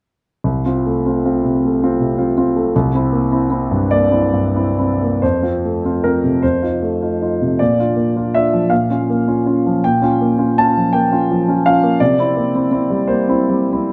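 This romantic classical character piece for solo piano, cut from a longer work, has a lyrical, hopeful mood. It moves in 6/8 at roughly 43-56 BPM in dotted quarters, with a flexible rubato feel, in F major. The grand piano sounds warm, polished and up front, ranging from C2 to A5, and it plays alone from 0.4 to 13.9 seconds. An opening phrase rests on F over C and C7, and a new passage begins at 5.2 seconds, passing through F, F7 and Bb before the darker turn to Bb minor and a final C7 at 12.0 seconds. Close, detailed microphones catch the instrument's presence, set in a moderate recital-hall reverb with a 1.5-second decay.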